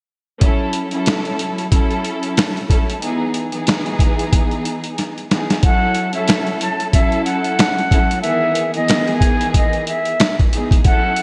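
Moody and tough, this boom-bap hip-hop excerpt in F# dorian moves at 92 BPM with a swung 16th feel, as a gritty, pitched-down, compressed sampler drum kit with a thumpy kick and medium-tuned snare sits up front beside a lush, bowed string section with smooth vibrato over F#m7 and Emaj7, until a drum fill at 5.0 seconds ushers in a breathy, close-miked concert flute melody with delay at 5.6 seconds, all set in a bright 1980s-style digital production with a lush hall reverb.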